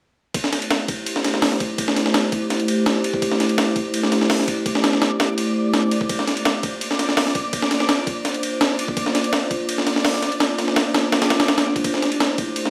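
Soaked in a wet echo-chamber reverb and vinyl crackle, this raw, frenetic drum and bass and jungle excerpt at 167 BPM in A phrygian sets an up-front, pitched-up, gritty breakbeat sampler kit with a thumpy kick and high-tuned snare against a warbling, nostalgic lo-fi pad with 12-bit grit and a filter sweep holding Am7 and Bbadd9 chords, while a reversed, granular, dreamy swelling texture enters in the background at 1.5 seconds.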